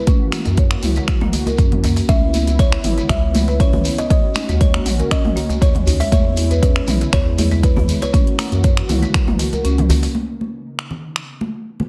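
Driving and hypnotic, this afro house groove rolls with a light swing, cut from a longer piece. An up-front, deep electronic kick anchors a dark-hatted drum kit of finger snaps, hi-hat and toms, while hard-handed congas with a thin, high-tuned skin and a tight, cracking djembe with metal rattles sit in the background, joined by a grainy, distant shekere. A round, dark analog bass pumps against the kick beneath a smooth, detuned sawtooth pad that holds chords through a chorus effect, and a mellow marimba played with soft mallets spins woody arpeggios through a dub echo. From 2.1 s a buzzing kalimba with a ringing thumbnail pluck adds a short melody, also trailed by dub echo. The kick drops out at 9.7 s, and the marimba stops at 10.0 s, before the harmony opens onto a lush C#m9 chord at 10.2 s, carried by the pad, drums and congas.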